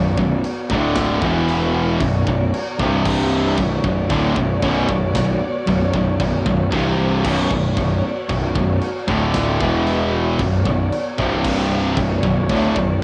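A dark, heavy metal passage in a half-time feel opens with three distorted guitars playing a riff over Bm, C5, D5 and E5: a bright high-gain guitar and a tight one sit in the background with cassette-tape grit, and a double-tracked fuzz guitar sits very quiet beneath them. A growly, overdriven picked bass sits up front, while a lush, woody string section bowed sul tasto holds sustained chords with vibrato in the background. From 0.2 seconds a saturated acoustic drum kit joins with a tight kick, medium-tuned snare, and crash and china cymbals, all in the moderate booth ambience of a home cassette recording.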